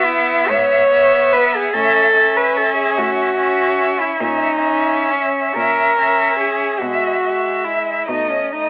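An up-front, woody cello carries a dark second line through this tender, warm classical fragment for cello ensemble in a rubato 12/8, while a distant cello sings the high melody with portamento, a rich cello bows the accompaniment and a close cello holds the quiet bass, each with vibrato and a soft attack, all heard in a small room through worn, warbling cassette tape with a telephone-like tone.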